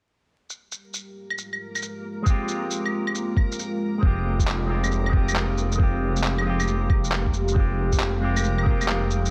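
Future garage with a melancholic, rainy mood, cut from a longer piece, opening with muffled, tape-warm electronic shaker, claves and handclaps at 0.5 s, soon joined by a deep, dark ambient pad with vintage 12-bit sampler grit and sidechain pumping, a reversed, dreamy granular texture in the background, and a twangy, scooped electric guitar through an envelope filter and analog delay. A thumpy, compressed electronic kick sits up front from 2.3 s, and after a short break a menacing, saturated detuned saw bass swells in at 4.0 s. The whole recording carries light reverb and vinyl crackle.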